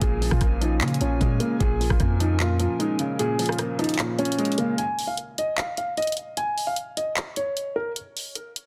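A dark, intimate concert grand piano carries the eerie melody up front over a soft, felt-muted upright piano, a detuned, chorused analog pad in the background and a deep, boomy 808-style bass that drops out at 2.7 s, while a knocking trap kit of kick drum, bright hi-hats, handclaps and rim clicks drives this hard-hitting half-time hip hop excerpt, its kick muted from 3.2 s until a break at 4.8 s leaves only the grand piano and drums.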